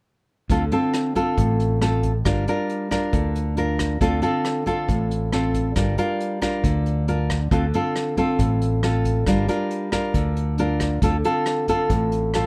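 A straight 4/4 bossa nova groove at 137 BPM in D minor sets a smooth, wistful mood, with the harmony swaying between Dm7 and Gm7 throughout this short section cut from a longer piece. Up front, a fingerpicked nylon-string guitar with fresh strings and audible finger squeak carries the accompaniment in a classical style, supported by a warm fingered electric bass with a direct, amped tone. Softer in the mix, a vintage drum kit played with brushes adds a punchy kick, hi-hat and rim click with a rolled-off top, all captured dry and detailed by close microphones.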